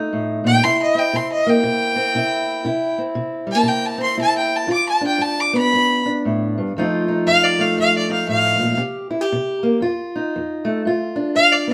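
A moderate stone-room reverb surrounds this short excerpt of acoustic country blues, captured as a duo playing live together in one room. The mood is swaggering and laid-back, with a swung, easygoing four-beat feel. A fingerpicked steel-string parlour guitar, dark and boxy in tone, sits up front and carries the accompaniment from the first moment. A single bowed fiddle with a gut-string, reedy voice joins at 0.5 seconds and takes the solo in its upper register, also placed close and forward. Beneath it, the harmony circles through dominant seventh chords on F, C and G until the passage breaks off at 11.7 seconds.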